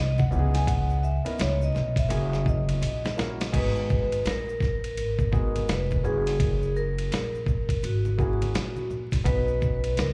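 Smoky and mellow, this jazz-hop cut from a longer hip hop piece moves at 84 BPM in 4/4 with a 63% swing on the sixteenths, heard as a live gig through a club's PA with small-room ambience, club reverb and vinyl crackle. A vibraphone played with soft mallets carries the melody from the first moment, its ringing, metallic tone shaded by a slow motor vibrato, slapback echo and tape echo, and it takes a solo until 3.5 seconds. An up-front upright bass, woody and plucked with steel strings, sits under it throughout, while a gritty, compressed sampler-style drum kit with a thumpy kick, medium-tuned snare, hi-hat, ride and crash enters at 0.2 seconds and rolls through a fill just before the next section begins. Congas played with hard hands and an egg shaker murmur in the background, and a dark concert grand piano with a deep low end comps from 0.3 seconds. The harmony drifts from C#m7 and F#7 into G#m9 and F#9 before landing on Badd9.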